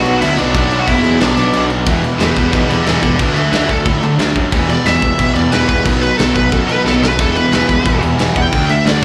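Urgent and raw, this punk rock excerpt at 180 BPM in E minor sounds like a live gig through a club PA, opening in half time before a dark, high-gain lead guitar, treated with slapback echo and delay, takes an up-front solo from 1.9 seconds over a growly fuzz bass, a double-tracked distorted rhythm guitar, two overdriven riffing guitars (one bright and compressed, the other very quiet), and a big rock kit with a punchy kick and rolled-off top that adds a brief fill at 6.9 seconds.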